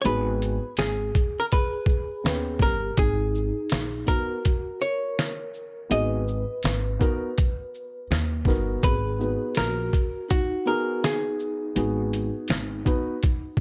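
A swung hip-hop groove in 4/4 comes from a gritty, pitched-down sampler-style kit of thumpy kick, medium-tuned snare, hi-hat and shaker, carrying the crunch of a vintage 12-bit sampler and sitting up front in the mix. Beneath it, a woody pizzicato upright bass on gut strings holds the low end, also placed close and present. A dark concert grand piano supplies mellow accompaniment with a smooth, short-sustaining touch and deep bass, while a clean, compressed hollow-body archtop guitar, picked and amplified, carries the melody near the front. From 1.5 seconds a vibraphone played with soft mallets adds a quieter second line, its ringing, metallic tone shimmering with fast motor vibrato and trailing a tape echo. The smoky jazz-hop mood drifts through minor-seventh and ninth harmony, all bathed in studio reverb, in this 13.6-second cut from a longer piece.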